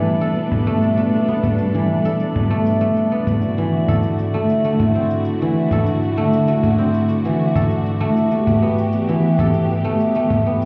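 A silvery, ringing guzheng sits up front, picking out arpeggios with fingerpicks through a low-pass filter and digital delay in this meditative, earthy excerpt of organic downtempo at 98 BPM in a straight 4/4. Beside it, a lush, bowed studio string section holds smooth, even sustained chords with vibrato, moving from G/B to D7 at 3.4 seconds and settling on Em7 at 8.3 seconds. Far in the background, a calm, glassy texture of drifting sine overtones hangs on a single high note, softened by chorus and its own reverb. From 0.2 seconds, gritty, compressed sampler-style electronic cabasa and toms join, filtered and re-recorded in a large room. The whole mix is heard muffled, as if through a wall, with club reverb and a moderate concert-hall reverb lending it a distant, hazy space.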